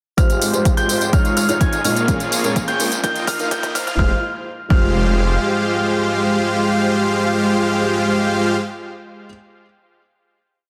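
Emotional and euphoric, this short festival progressive house piece in F minor runs at 126 BPM in a straight 4/4. A huge, thick supersaw riff sits up front with sidechain pumping, a filter sweep and delay, while a punchy four-on-the-floor kick, crisp programmed hats and tambourine, a menacing detuned saw bass, an intimate grand piano doubling the chords an octave higher and a felt-muted upright piano with boxy, dotted-rhythm chords all drive the build-up from 0.2 s, with a drum fill and a very quiet riser near the end of the build. At 4.0 s the hats and tambourine drop away, the kick following shortly after, and the pianos and supersaw ring out on a final Fmadd9 chord in a lush hall reverb, the dense, heavily limited master keeping the sound full.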